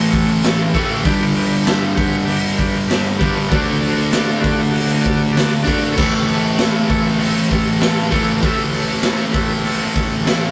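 Garage rock with a swaggering, raw feel, this rough rehearsal-room excerpt sets a bright, double-tracked fuzz guitar riff up front over a saturated, punchy drum kit of crash, hi-hat, kick and snare in a pumping stone room, while a buzzy vintage combo organ holds clean sustained chords with light vibrato in the background as the harmony moves from A through G and D back to A.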